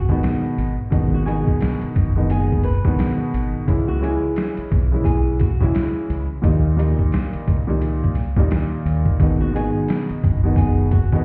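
A tough, dark boom-bap hip-hop cut opens with a small, fingerpicked nylon-string guitar melody touched by analog delay over a round, deep dub fingered bass, joined a moment later by a worn, woody upright piano with audible action noise and cassette-tape character, set up front alongside a gritty, pitched-down sampler kit with a thumpy kick, medium-tuned snare and hi-hat. The swung groove moves through G#m, C#m and D# before returning to G#m at 9.2 seconds. The whole mix sounds muffled through a wall, with stone room reverb and vinyl crackle, as if cut from a longer piece.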